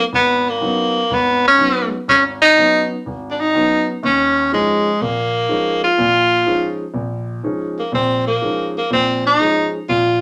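A swung 4/4 pulse at 123 BPM drives this short jazz excerpt, its spiritual, searching mood colored by suspended ninth chords moving from Db9sus4 to Eb9sus4 at 4.0 seconds. A bright, up-front tenor saxophone carries the solo melody between Ab3 and F4, while a warm, polished grand piano accompanies lower in the mix, ranging from Ab1 to Eb4. A short studio reverb lends the sound a wet sheen throughout the 10.2 seconds.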